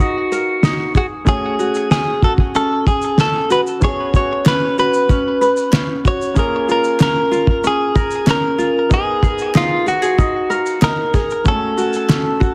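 Sunny and easy-going, this acoustic pop excerpt in a straight 4/4 puts a bright, clean, direct-recorded electric guitar up front carrying the picked melody with plate reverb and delay, over a muffled, cloth-damped drum kit with a fat snare, tight kick and shaker that sounds gritty and saturated with a rolled-off top. Fingerpicked ukulele and a clear, polished baby grand piano sitting in the background play accompaniment, both bathed in plate reverb, while crisp group handclaps join at 4.5 seconds. The chords move through Abmadd9, Gbmadd9, Db7sus4 and Bbm7 in a small room, with a dense, heavily limited modern master.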